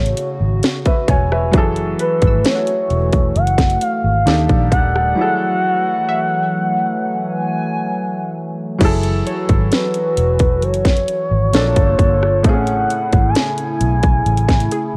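A moody, late-night contemporary R&B piece opens with a smooth, gliding portamento lead carrying the melody with vibrato and chorus over a soft, felt-muted upright piano, a hollow, flute-like pad holding dark sustained chords, a round, foam-muted electric bass, and a glassy, crystalline wavetable pluck glinting in the background through delay. An up-front trap kit enters almost at once with a hard-clipped kick, sharp snare, rim clicks, metallic hats and crash, and a break runs from 5.2 to 8.8 seconds amid lush chords such as F#m9 and D#maj9#11. The whole mix sits in a digital ambience and carries the worn, warbling pitch drift of old cassette tape.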